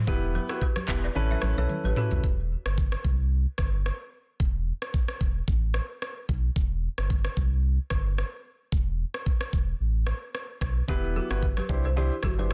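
Afrobeats in E minor at 111 BPM, with a lightly swung 16th-note feel and a hypnotic, sultry mood, cut from a longer piece. A deep sub bass with an octave layer sits up front throughout, its sine-and-triangle tone pairing a fast attack with sustained notes, alongside an electronic, produced afro-pop drum kit of knocking kick, metallic hats, handclaps, rim clicks, shaker and toms, re-recorded in a large room with soft clipping on the snare. A polished grand piano with long sustain, a round, airy balafon riff played with rubber mallets and treated with delay, and bright, thin-skinned congas tucked in the background open the track, then drop out at 2.2 seconds after a short drum fill. Through the middle stretch the hi-hats are muted, leaving bass and drums to carry harmony that moves among Em, C5 and Asus2, with brief unharmonised gaps. Piano, balafon and congas return at 10.9 seconds as the chords settle on Em and Cadd9. 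The mix is dense and heavily limited, with little reverb.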